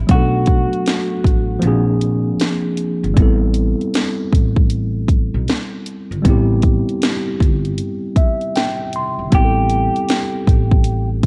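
A mellow, slightly out-of-tune tine electric piano and a woody pizzicato upright bass open this reflective, hazy lo-fi hip hop excerpt in A minor, moving at 78 BPM with swung 16ths. An up-front electronic house kit with a punchy kick, cracking snare and warm hats carries the groove, while a dark, slightly broken-up guitar through a small old amp plays a brief filtered melody with tape echo at the start. The piano takes a fill at 7.8 seconds before the guitar returns at 9.3 seconds, all under light reverb and a worn, warbling cassette haze with drifting pitch.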